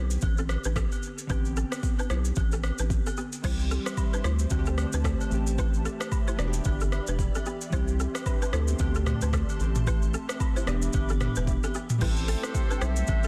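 Glassy, chorused digital keys, a woody, buzzing balafon riff with tape echo and a thick, saturated sub bass open this hypnotic, smooth afrobeats groove at 112 BPM with a swung 16th feel. An up-front, overdriven afro-pop drum kit with a deep kick and metallic hats joins them, along with background agogo bells and woodblock. From 3.4 seconds a hollow, warbling pad adds sustained chords over a progression moving through C, D7sus4, Am7 and Em7. A clear, roomy horn section with tape echo arrives at 12.0 seconds, and a distant, pure silver concert flute melody enters at 12.8 seconds before this cut from a longer piece ends.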